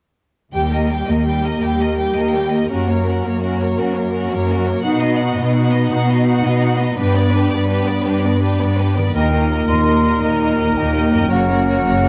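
Moving in a straight 12/8 at 112 dotted-quarter beats per minute, this soaring, adventurous cinematic passage is cut from a longer piece and tuned slightly low, to A4 = 437 Hz. From 0.5 seconds a lush bowed string body carries it. A warm violin section sings the melody with vibrato and a soft attack, while a darker, distant violin section traces a second line. Violas with portamento sit in the background, and a rich, up-front cello section anchors the bass as a tight French horn section holds sustained chords. The harmony moves through Eb, Gb, B and G before returning to Eb and Gb. Just after 9 seconds the texture opens out: a faint, thumb-plucked harp rings out arpeggios; an airy silver flute, a punchy oboe and a hushed, vintage-toned clarinet add second lines; a clear trombone section softly joins the sustained chords; and a double bass section deepens the low end, all captured with close, detailed microphones and light reverb.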